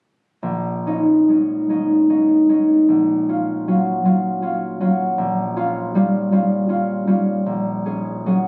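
Captured on a phone in a recital hall, compressed and bathed in wet reverb, this fragment of a longer classical piece features a solo concert harp, acoustic, thumb-plucked, ringing and up front, playing from 0.4 to 8.5 seconds in a rubato 6/8 at about 46-54 BPM in Bb minor across a range from Bb1 to Ab4, its chords moving from Bbm7 through Ebm9/Bb and Bbm6 to Ab9sus4/Bb in a mysterious, wistful mood.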